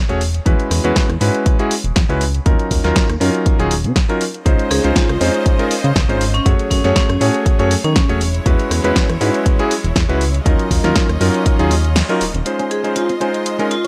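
A punchy, up-front electronic kick drives this sunny, feel-good nu-disco cut alongside a clangy vintage electric grand piano with analog delay, a glossy chorused synth bass pumping under sidechain, a house kit of bright hats, rim click and snare, biting chamber strings entering at 4.5 seconds, a ringing vibraphone with tape echo, and a twangy clean electric guitar arriving at 12.6 seconds after a break, all in a dry, gritty mix.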